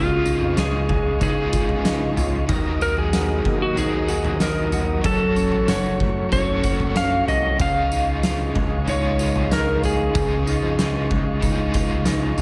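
A big, boomy, low-tuned drum kit sits up front from 0.3 s, its fat snare, kick, toms and tambourine saturated and gritty in a pumping room sound, anchoring this ethereal, blissful dream pop excerpt at 94 BPM in Db major. A dark, clean lap steel carries the melody with slide and volume swells through tape echo, while a hollow-body semi-hollow guitar fingers compressed arpeggios with subtle chorus and tape echo, and a bright, double-tracked overdriven guitar adds crunchy accompaniment with tremolo. A mellow, flute-like tonewheel organ holds chords with key click through a fast rotary speaker, and a glossy, retro chorused synth bass sits in the background, all inside a lush hall reverb over Dbadd9, Ebm and Gbm chords.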